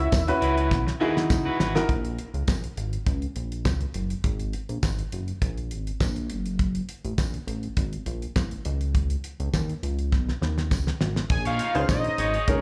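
A glossy, chorused synth bass drives this danceable early-eighties boogie funk clip from start to finish alongside a dry, damped 70s drum kit with a tight kick, a fat snare and fills at 0.7 and 10.1 seconds, while a jingly tambourine sits in the background and a fat, detuned analog lead, a clear, boxy concert grand piano and a twangy, slightly broken-up electric guitar, each with slapback echo, play only at the opening and return near the end, the whole performance heard as a live gig through a club PA.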